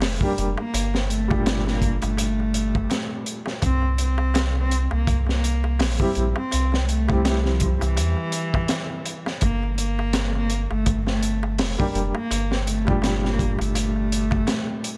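A bowed cello carries the melody from 0.6 seconds, played sul tasto by a single close, intimate player with light vibrato, a soft attack and a touch of tape echo. This brooding, cinematic trip hop excerpt moves at 83 BPM in 4/4 with a swung sixteenth feel, set in G dorian over a progression that moves from G minor to C at 3.6 seconds and back to G minor at 9.4 seconds. Underneath, a deep, round dub sub bass sits up front with a tube-saturated edge, and a crunchy breakbeat kit of hi-hat, punchy kick and high-tuned snare sounds gritty and dark with a rolled-off top. A woody upright piano supplies accompaniment with tremolo and tape echo. Further back, a close and dry clay-shell darbuka adds natural-skin texture, and studio reverb lends the whole a sense of space.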